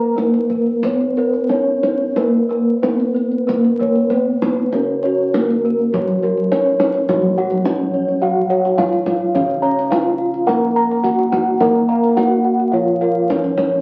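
Stately and shimmering, this Javanese gamelan passage in a straight 4/4 is cut from a longer piece and heard through the crackle of a very old 78 rpm record. Three bronze metallophones carry the texture: one states the melody, one plays an accompaniment and one plays arpeggios. Two of them are paired in tuning, so their ringing notes give off shimmering beats. One is struck with a wooden mallet, while the others have a mellow, soft sound from padded disc mallets, one of them airy. Two sets of bossed gongs add a second arpeggio line and the bass, one round and mid-forward, the other padded and sitting in the background. A deep kendang drum with a live-room sound joins at 0.2 s, a moderate studio reverb surrounds the ensemble, and the music moves into a new section at 7.1 s.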